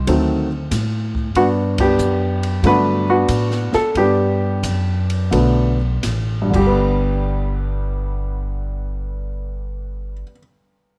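An intimate baby grand piano with audible action noise carries the melody in this sophisticated, relaxed swinging jazz trio excerpt, over woody pizzicato upright bass and a soft drum kit with dark cymbals and a boomy kick; the band hits an accent at 1.7 seconds and slows through the opening passage, and the drums drop out at 6.6 seconds as piano and bass finish in light small-room reverb.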